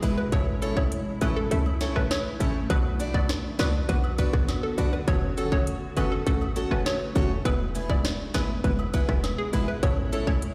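An overdriven island pop drum kit sits up front with a tight kick, sharp snare and metallic hats, joined by a punchy, sine-based 808-style bass, in this tough, bouncy dancehall excerpt; the kick drops out between 1.5 and 2.7 seconds. A bright, detuned chord stab with chorus and a hollow square pluck melody carrying chorus and tape echo ride alongside full-bodied steel-string acoustic guitar arpeggios, while a cloudy granular pad with built-in reverb and sidechain pumping drifts in the background alongside distant cabasa and woodblock. The mix sounds as if played on a big sound system in a bare stone room.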